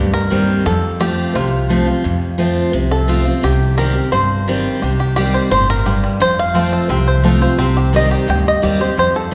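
Lonesome and haunting, this bluegrass passage is cut from a longer piece and moves at a brisk 173 BPM in a straight 4/4, set in C dorian with tuning at A4 = 439 Hz. A bright, twangy five-string banjo carries the melody as a solo from the opening moments to 9.3 seconds, played with fingerpicks and sitting up front with a percussive bite. Beneath it, a full-bodied dreadnought acoustic guitar with fresh strings is picked in accompaniment, also placed up front. The upright bass, played pizzicato on steel strings, adds a woody low foundation. The harmony shifts between Cm and F, and a drenched reverb gives the whole group the long, resonant air of a church or concert hall.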